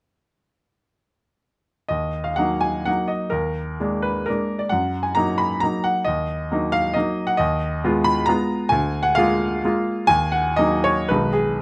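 Dotted rhythms drive this triple-time romantic dance in 3/4, its tempo bending freely with rubato between 112 and 143 BPM. A clear baby grand piano plays alone from 1.9 to 11.6 seconds, ranging from Cb2 up to Cb6 with a natural, up-front tone and short sustain. The mood is capricious yet wistful, settled in Eb minor as the harmony moves from Ebm through Bb7 over Eb and a half-diminished Fm7b5, before closing on Abm over Cb. Close, detailed microphones catch the instrument with light reverb around it. The passage is cut from a longer piece.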